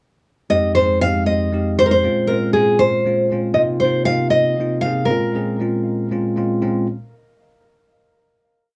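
A short jazz piece in 6/8 at 78 BPM, with a driving, slick mood, opens at 0.5 seconds as a nylon-string guitar and a bell-like tine electric piano begin together. The guitar carries the melody up front, its classical, fingerpicked tone acoustic and warm, with audible finger squeak and a touch of analog delay as it shapes a motif-based line in period phrases. The electric piano supports it with bright, clean, direct rootless voicings and pushed chord rhythms, also up front and slightly quieter than the guitar. The harmony in Bb dorian moves from Fm9 through Bbm9 and Ab69/C to Bbm7, with the guitar finishing at 6.1 seconds and the piano ringing on until 6.9 seconds into a closing final chord. Light reverb, small room ambience and the grain of cassette tape give the recording an intimate, slightly worn character.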